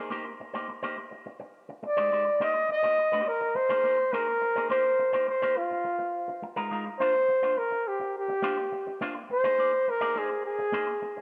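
Disco with a driving, danceable straight feel, this short cut from a longer piece opens with a bright, twangy, envelope-filtered electric guitar playing quiet accompaniment over minor-seventh and suspended chords, before a dark, breathy flugelhorn enters at 1.9 seconds with an intimate, whispered jazz-style solo melody, lightly vibrato and scooped, sitting up front through analog delay in a wet spring reverb as the harmony moves to a new section at 7.0 seconds.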